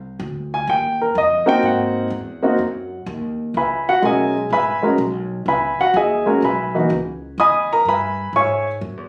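A dark, mellow upright piano sits up front in an intimate sound with audible action noise, accompanying a thumpy pizzicato upright bass on woody gut strings through a spiritual, cool excerpt of swung modal jazz in 4/4, captured on a phone in the room and given moderate studio reverb and compression.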